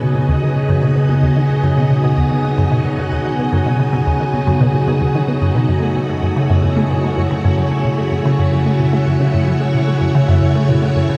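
A lush string machine, a fingerpicked concert harp and a juicy, squelchy blip pluck all sound together from the first moment of this hypnotic, cosmic space-music excerpt: the strings hold vintage-toned chords with ensemble chorus, the harp rings out arpeggios through tape echo, and the resonant pluck repeats a low riff through phaser and echo. A dark, airy, breathy noise texture drifts high above with its own built-in reverb, while a filter sweep runs across the synth arpeggio sound throughout. The harmony moves from B to F#m7 at 5.7 seconds, all set in a vast cathedral-like space with a cassette tape character.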